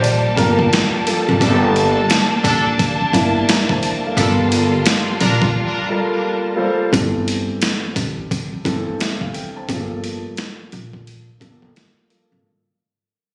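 A swung boom-bap hip-hop groove at 87 BPM in 4/4 drives this dark, gritty excerpt in G dorian, built on a compressed, pitched-down sampler-style drum kit with a thumpy kick, high-tuned snare and hi-hat, sitting up front with the heft of a large room. Beneath it, a woody, gut-strung pizzicato upright bass holds the low end, while a mellow concert grand piano with deep bass plays accompaniment throughout, and a filtered upright piano with tape echo offers a brief melody only in the first 0.7 seconds. A lush, bowed studio string section sustains focused chords until 6.9 seconds, moving through Gm9 and Bbmaj7/G. From 1.4 seconds, a brilliant, filtered trumpet section adds jazz-style stabs with light vibrato and tape echo. After a short break, the harmony shifts to G13sus4 before returning to Gm9 as the piece fades out. The whole mix has a roomy, phone-captured character, with moderate scoring-stage reverb, studio reverb and compression.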